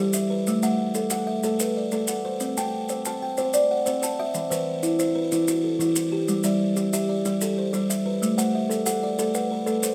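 Hypnotic and trance-like, this brief passage of southern African traditional music in 12/8 spins an mbira-style interlocking cycle of arpeggios from a thumb-plucked, buzzing kalimba with a solid, woody body and a second kalimba with a soft, hollow, mellow ring and a vintage, band-limited tone, both sitting up front, while grainy maracas join from 0.1 seconds, all captured with close, detailed microphones and light reverb.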